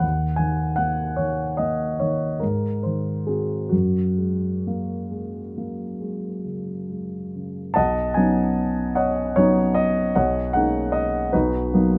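Hazy and luminous, this fragment of a longer impressionist classical piece features a single polished, up-front grand piano, unfolding a slow, rubato 9/8 at around 43-52 BPM in F# major, with drifting add9 and seventh harmonies that settle into B major at 7.8 s, all captured through close, detailed microphones with light reverb.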